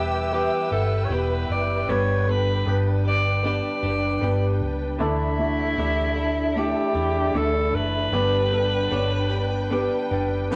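Pop piece at 77 BPM in 4/4, tender and emotional, cut from a longer piece and moving through Em, G and Dsus2 across its 10.6 seconds. A raspy, gritty alto saxophone carries the melody with vibrato, sounding roomy yet up front, over a concert grand piano with deep bass and short sustain, a dark, woody string section holding lush bowed chords, and a clean, direct-recorded electric guitar picking compressed arpeggios through a phaser. A punchy, foam-muted fingered bass sits round and up front, and the whole take has the rough, wet feel of a small rehearsal room.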